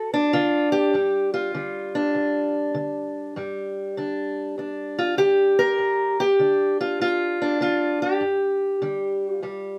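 The clip opens on a fingerpicked steel-string acoustic guitar alone, sounding a D chord before moving to G5 at 0.9 seconds. This is acoustic country blues with a rollicking, swaggering mood, set in 4/4 with a loose swing on the eighth notes. The guitar has a dark, boxy parlour character and sits up front, ranging from a low D2 to Bb4. The room adds little reverb, so the instrument comes across dry and close. Cut from a longer piece, the guitar carries the whole performance from start to finish, ending at 9.8 seconds.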